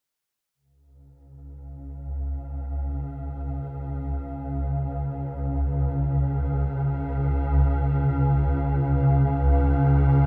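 Ambient in free time, this vast, ominous fragment of a longer piece fades in on a single up-front swarming drone that enters at 1.6 seconds and holds a tense, evolving, detuned unison of sine tones between C#2 and C#3, its granular texture, slow attack and long release steeped in its own built-in reverb and a huge ambient room with a 7.3-second decay.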